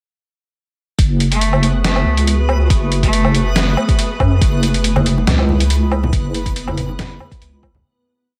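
A detuned, up-front wobble bass anchors this dark, cavernous deep dubstep piece in F# minor at 140 BPM with a half-time feel, arriving at 1.0 s together with a deep layered kick and a gritty, pitched-down trip hop kit of snare, closed hat and low woodblock, while a blurred granular cloud pad hovers in the background and a reversed, dreamy texture swells, a nasal, boxy bowed cello adds short phrases through dub echo until 3.5 s, and ringing congas and bongos enter at 5.0 s as the piece fades out from 5.6 s.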